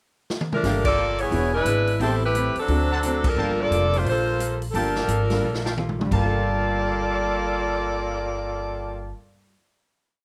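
A swinging 175 BPM big-band groove in G minor opens with a drum-kit fill on sticks keeping time on the hi-hat, then a woody pizzicato upright bass in two-feel, a dark, clean archtop guitar strumming four to the bar very quietly, an intimate baby grand comping syncopated rootless voicings in the background, and tight trumpet-section stabs frame a warm saxophone section playing a motif-based melody with vibrato in four-part block voicing, setting a dramatic, sultry mood over Gm9, E7, Am7 and D7 before settling on a final chord from 6.1 seconds in light reverb.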